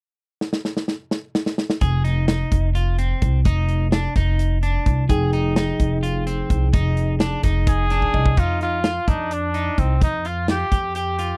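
A modern studio drum kit opens this brooding, intricate progressive instrumental in 7/8 with a fill at 0.4 seconds, its tight kick and medium-tuned snare sitting up front. At 1.8 seconds a woody, dark pizzicato upright bass and a twangy, slightly broken-up electric guitar playing picked arpeggios settle onto an Fm9 chord, joined for a stretch by a mellow, clean tine electric piano that adds a fill of its own. A punchy, clear trumpet with light vibrato takes the lead melody from 7.7 seconds, and the harmony moves to F7sus2 at 8.4 seconds, all captured in a dry, close 1970s-style studio sound.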